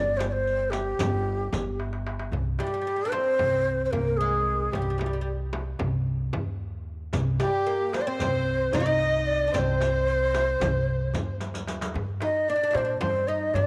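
Soulful and melancholic, this Turkish makam ensemble piece moves in a brisk 9/8 at 224 eighth-note beats per minute, set in C makam nihavent and cut from a longer piece. A breathy, reed-cane ney carries the melody up front, its end-blown tone colored by vibrato and a crisp attack. Beneath it a pizzicato upright bass with gut strings gives a dark, thumpy foundation, while a crisp metal-shell darbuka sits in the background beside a close, dry frame drum and the dark jingles of a vintage, band-limited riq. A bright, fretless oud, plectrum-plucked on double strings, enters at 2.6 seconds with a woody second line. From 7.4 to 11.4 seconds a clear chamber violin section joins in the ney's register, bowed with light vibrato, biting yet earthy with a smooth top. Drum fills mark the turns between sections, and a moderate plate reverb lends the ensemble a lingering space.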